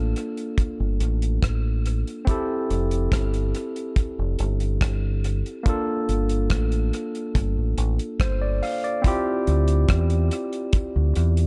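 A dark, warm small-room production frames this short, romantic lovers rock reggae passage, cut from a longer piece, with a smooth, unhurried straight feel. A deep, round fingered electric bass sits up front beneath a bright, barky tine electric piano played clean through a combo amp, accompanying over a rootless Gm9 and an Fmaj9. A dry, damped 70s drum kit with a tight kick, hi-hat and rim click and a rolled-off top joins at 0.2 seconds, and the harmony moves to Dm11 for a new section at 9.0 seconds.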